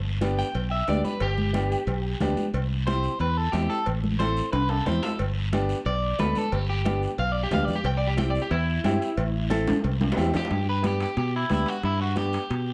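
Close, detailed microphones and light reverb give this festive Latin cumbia an intimate, joyful sound, with a warm, up-front fingered electric bass anchoring it from the start. A slightly broken-up, picked electric guitar carries the melody as a solo through 10.5 seconds, colored by spring reverb and slapback echo, while a clear, woody upright piano accompanies over chords moving among G, C and Am. Bright, soft-handed congas sit in the background beside ringing, vintage metal-shell cowbell and timbales and a raspy guiro.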